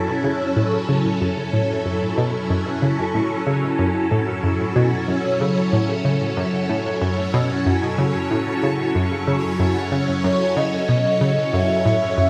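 Bathed in a lush concert-hall reverb, this excerpt of ambient, sequencer-driven space music moves at 93 BPM in F# minor, expansive and hypnotic over a single F#m7 chord. A swirling, vintage string machine with ensemble chorus and phaser holds bright sustained chords up front. A round, wave-folded analog pluck with cassette tape colour and tape echo repeats a low riff from 0.2 seconds, while a bubbling, resonant texture of random filter steps fades in from the background. At 10.2 seconds a smooth, expressive synth lead with vibrato and tape echo enters with a mellow, high melody.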